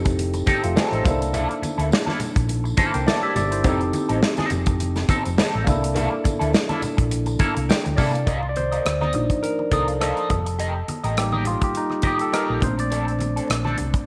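Cinematic and silky, this lush 1970s-style soul excerpt moves at 104 BPM with a swung 16th feel in C dorian, as a barky, overdriven tine electric piano with phaser comps up front and then plays a fill at 7.1 seconds leading into its solo from 8.3 seconds, over a slightly broken-up electric guitar riff through wah, a dark, round hollow-body bass, a modern studio drum kit with a tight kick and rim clicks, very quiet ringing low congas and a jingly tambourine that stops at 8.3 seconds, all set in light reverb and studio ambience.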